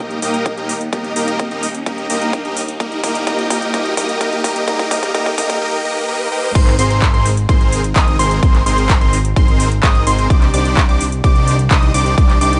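A hall-like digital ambience frames this anthemic, powerful slice of festival progressive house at 128 BPM in straight 4/4. A huge detuned supersaw riff pumps against the sidechain with dub echo over a fat, nasal analog bass, while a big-room kit with metallic hats, claps and crash runs a drum fill under a background riser through the build-up and a punchy kick arrives at 0.5 seconds. At the drop at 6.6 seconds, harmony moving from Eb and Cm to Abadd9 and Cmadd9, a catchy, mellow plucky unison lead enters with high arpeggios, pumping and echoing alongside the riff.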